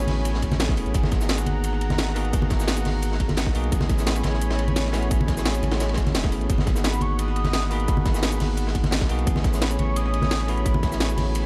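Up front, a deep sine-toned sub bass anchors this lush, soulful liquid drum and bass excerpt, joined by a bell-like tine electric piano with delay, a detuned sawtooth pad pumping under sidechain, a tight overdriven electronic kick layered with a cracking-snare kit and a gritty breakbeat kit, soft congas in the background, and a velvety synth lead with chorus and tremolo entering at 6.8 seconds over chords shifting between Amaj9 and G#m9.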